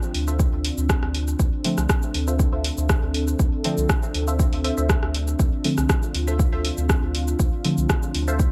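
A dry, close sound frames this meditative, deep dub techno excerpt in D minor at 120 BPM, where a moody, detuned analog pad with chorus holds a sustained Dm7 that pumps against the sidechain, over a round, soft sub bass. An up-front, tape-warm electronic kick enters at 0.4 seconds, joining a deep house kit of cabasa, hi-hat and rim click re-recorded in a small room, while a muted, evolving filtered chord stab with phaser and dub echo carries the riff. From 1.6 to 7.9 seconds a warbling, vintage mellow stab adds chorus-and-phaser colour and echoing decays in the lower register.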